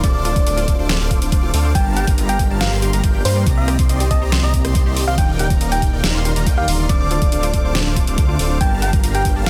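From the first moment, this playful, euphoric future bass excerpt lands at 140 BPM in a half-time feel, with an overdriven, knocking electronic kick and a dubstep kit of deep snare, rim click and bright hats, both touched by studio reverb. A thick, detuned saw bass sits up front with tube saturation and chorus, while a huge, compressed supersaw riff spans the low and high registers, both pumping under sidechain compression. Over them, a round, keys-like FM lead carries the melody, gentle and decaying, with vibrato, chorus, digital delay and the same sidechain pumping. An airy, dreamy lead arpeggiates high in the background, and a punchy ring-modulated unison pluck adds very quiet arpeggios beneath it. A very quiet, ethereal pad holds full-bodied, wave-folded chords through Dm7, Gm7, Cm7 and Ebmaj7, and the kick drops out at 9.3 s just before the cut at 9.5 s, all within a dense, heavily limited modern master that carries little reverb of its own.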